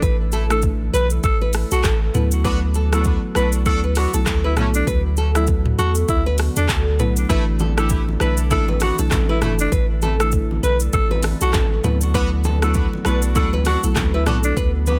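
Afrobeats at 99 BPM in D major, this sunny, romantic excerpt from a longer piece rides a swung sixteenth-note groove over chords that move between Asus4 and D6. An up-front electronic afro-pop kit with a deep kick, metallic hi-hats, handclaps, rim clicks, shaker and toms drives the track, anchored by a punchy sine sub bass with a pitch-drop attack. A fingerpicked nylon-string guitar plays a classical-toned riff with audible finger squeak and digital delay, while a dry, close-miked marimba with medium mallets adds woody, buzzing accompaniment. A raspy, gritty alto saxophone carries the melody with vibrato and a smooth top, also treated with delay, and from 2.4 seconds a distant, roomy horn section adds a second line in light vibrato. Underneath, a very quiet, ethereal FM pad holds glassy sustained chords with ensemble chorus, and low-tuned, ringing congas join in the background at 7.6 seconds. 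The small room ambience sits under a dense, heavily limited modern master.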